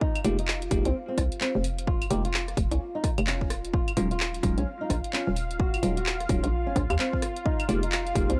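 This UK garage cut, in a two-step style at 129 BPM with a skippy 16th-note swing, carries a soulful, skippy mood across its short 8.4-second span. A punchy, tape-warm electronic kick sits up front alongside a garage kit of claves, handclaps, warm hi-hats and rim clicks, re-recorded in a small room. A hollow, bouncy FM bass with a fast, decaying attack knocks along beneath, while a bright, bell-like tine electric piano drops clean stabs through phaser and tape echo, entering at 0.2 seconds. A dark, thumb-plucked nylon-string guitar carries the melody with tape echo, weaving alongside a smooth, detuned sawtooth pad whose chorus and sidechain pumping breathe with the beat. The harmony moves from an open start to Ebm11 at 3.5 seconds and Fm11 at 7.5 seconds, all framed by a dry, gritty hardware-and-cassette sound with a touch of digital ambience.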